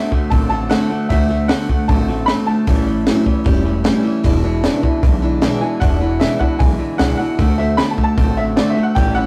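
A straight 4/4 pulse at 153 BPM drives this upbeat, rollicking rockabilly snippet, cut from a longer piece and tuned slightly low to A4 = 438 Hz. The compact cocktail drum kit sits up front and dry, its high-tuned snare, punchy kick and hi-hat carrying the beat, while the pizzicato upright bass adds a woody low end on steel strings. A parlour-style steel-string acoustic guitar picks out the accompaniment close to the listener, and an electric guitar through a small old amp plays a twangy, slightly broken-up riff with spring reverb. A bright upright piano carries the melody up high with a brilliant, intimate tone, audible action noise and a slightly detuned edge, dropping out at 3.2 seconds and returning at 5.6. The harmony moves through D7, A7 and E7 before landing back on D7, all captured in a rough rehearsal-room recording with a moderate small-room ambience and warm saturation.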